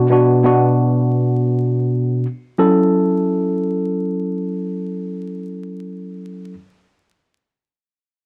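Floating in free time with its pulse unmarked, this brief hip hop fragment has a tough yet reflective mood. A mellow tine electric piano carries the accompaniment on its own from 0.0 to 6.5 seconds, moving through a range from B2 to A4. Its tone sounds worn and slightly out of tune, yet clean and direct, sitting up front in the mix and shaped by a cassette tape character along with high-pass and low-pass filtering. The harmony rests on Bm before shifting to F#m7 at 2.6 seconds, where the passage moves into a second section. A moderate studio reverb lends a modest sense of space, while vinyl crackle runs beneath.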